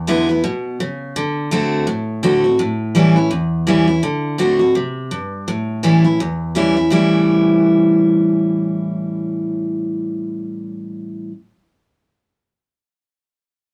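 Swung eighth notes drive this brisk rock passage in 4/4, giving it an upbeat, retro bounce. A lone picked steel-string acoustic guitar carries the whole performance, its dreadnought tone bright and full-bodied and sitting up front in the mix. The guitar moves through dominant seventh chords, opening on E7 before settling into a D7 and A7 pattern that returns once the second section begins at 4.0 seconds. The playing spans low bass strings up into the middle register, and the music passes through three short sections, with the last starting at 6.9 seconds. A small room lends a moderate touch of reverb, while tube saturation adds grit to a rough rehearsal-room sound in this short excerpt cut from a longer piece.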